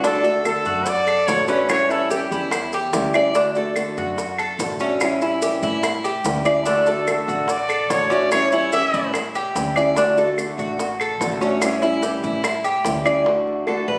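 A warm, lightly vibratoed trumpet sits up front with short melodic phrases from 0.1 to 2.5 seconds and again at 6.7 seconds, floating over a relaxed, sunny Cuban son and guajira groove in D major at 145 BPM that alternates between D and A7. A metallic, double-strung tres picks arpeggios beside a boxy, fingerpicked old ladder-braced guitar with a dark tone, while a thumpy gut-string upright bass anchors the low end. Tight, high-tuned bongos and band-limited vintage claves sit in the background, grainy maracas stay close and dry, and the phone-captured room sound carries a moderate plate reverb and compression.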